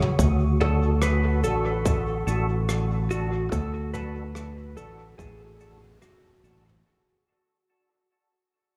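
A round, punchy fingered electric bass sits up front with a tight electronic kick in this deep, spacious ambient dub fragment at 72 BPM in 4/4 with a swung sixteenth feel, resting on a D chord from 0.2 seconds while a soft brush kit of cabasa, rim click and toms carries dub echo. A warbling, lo-fi tape-like pad holds very quiet sustained chords alongside a breathy, wind-like tuned noise layer in the background. A dark, compressed lap steel plays a slide melody through echo, and a fat, percussive tonewheel organ adds stabs with key click, chorus vibrato and slow rotary speaker, all in a light small room as the whole 6.9-second passage fades out.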